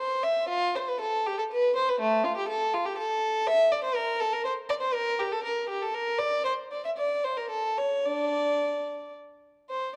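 In a flexible, rubato 3/4 pulse at roughly 106-125 BPM, a solo bowed violin with a reedy gut-string, period-style tone plays up front through this grave, solemn baroque-style suite movement in A minor, ranging from A3 to E5 across a 9.9-second excerpt set in a recital hall with a moderate 1.6-second reverb tail and a dark, warm production.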